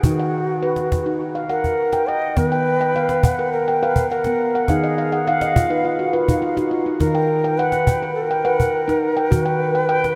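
A ringing handpan of nitrided steel sits up front in this hypnotic, meditative world excerpt, its fingertip-played arpeggios carrying a vintage, band-limited color through a tape echo. Alongside it, a Native American-style cedar flute carries the melody with an airy, reedy voice, a crisp chiff on each attack, gentle vibrato and rolled-off highs, sharing that same tape echo. A close, snappy cajon with snares keeps time in a straight 4/4 feel, its hard-handed strikes sitting up front beside the handpan. The handpan steps forward with a fill from 4.7 to 7.0 seconds as the harmony drifts around Eb minor and ends on an augmented chord. The whole performance unfolds in a vast, echoing space, bathed in a huge, lingering reverb that stretches every note into a meditative haze.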